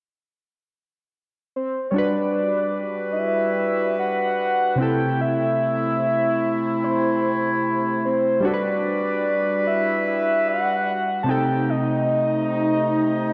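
A soft, octave-layered synth lead carries the melody from 1.6 s, its round, full-bodied tone built on a triangle and a sine sub octave, with vibrato and a touch of chorus, phaser and delay giving it a dreamy shimmer. This is a smooth, romantic R&B piece at 74 BPM in 4/4, with a gentle 16th-note swing, set in G major and tuned to A4 = 442 Hz. From 1.9 s, analog keys supply the accompaniment with a mellow pulse-and-sawtooth sound, detuned and chorused, where a filter sweep and quick, decaying notes sit up front in the mix. A dark woodwind section enters alongside them, holding sustained chords with soft attacks and vibrato in a classical ensemble style that feels distant and roomy. The harmony moves from Gmaj7 to C6, back to Gmaj7, then darkens to Cm6. A lush hall reverb soaks the whole mix, and the passage is cut from a longer piece, stopping at 13.3 s.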